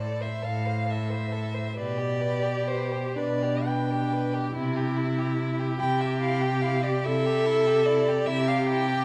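This is a slow, romantic classical movement for string quartet, a solemn and elegiac passage cut from a longer piece, moving in a rubato 12/8 at roughly 40-51 BPM counted in dotted quarters. A single violin carries the melody with a smooth top and steady vibrato, while a second violin, set further back and sounding distant, traces a supporting line beneath it. The cello anchors the bass up front, its bowed tone full and rich with vibrato. At 1.8 s a clear, close viola enters with smooth accompaniment, just as the harmony moves from A minor to G over B, settling on C at 4.5 s. Each bowed part is played by one player with even, connected phrasing, and the whole quartet sits in the lingering reverb of a scoring stage within a dark, warm production.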